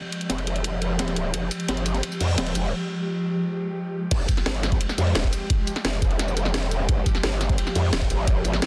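A dense, heavily limited modern master frames this tense, aggressive excerpt of dark technical drum and bass at 173 BPM in F minor, where a swarming, detuned drone holds sustained chords under its own reverb and sidechain pumping, a filter sweep on the drone driving the build-up with a drum fill from 1.3 to 2.7 seconds before the drop at 4.1 seconds. From 0.1 seconds, a layered kit with a cracking snare, crash, hi-hat and tambourine punches forward, joined at 0.3 seconds by a knocking electronic kick and a growling, wobbling bass with formant-filtered bite and chorus that pumps up front. Beneath them, a gritty, saturated breakbeat kit entering at 0.1 seconds with a high-tuned snare and dark, rolled-off cymbals adds crunch from the studio room.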